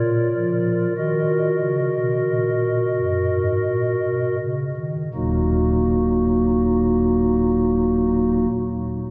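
A soft, hollow stopped-flute pipe organ plays alone from the start until 8.5 s. It carries a grave, dark classical chorale in a slow, rubato triple metre that eases back over the first 5.1 seconds. Its mellow flute stops, tremulant and romantic voicing span deep bass to high treble, sitting up front yet ringing through a long, wet cathedral reverb heard from further back in the room, in this short section cut from a longer piece.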